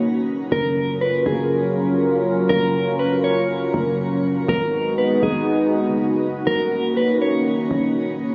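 Blissful and dreamy, this short excerpt of atmospheric cloud-rap in a half-time feel sets a clean, fingered electric guitar melody, softened by harmonic tremolo, a low-pass filter and tape echo, over a moody, detuned analog pad with chorus and a deep, boomy 808-style bass, all heard through a lightly reverberant phone recording that moves from D#m7 through F#maj7 and G#m7 back to D#m7.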